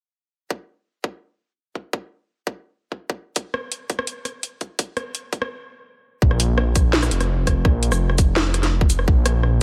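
Half-time drum and bass at 168 BPM, heavy and tense, opens with a tight, layered electronic kick up front, joined at 3.4 seconds by a produced kit of cracking snare, rim click, shaker and metallic hats, both carrying a small-room character and little reverb. After a stop, the drop at 6.2 seconds brings in a dark detuned saw bass, deep, rumbling and saturated, sustaining low between F1 and Bb1 with a beating, sine-weighted body. The clip is cut from a longer piece.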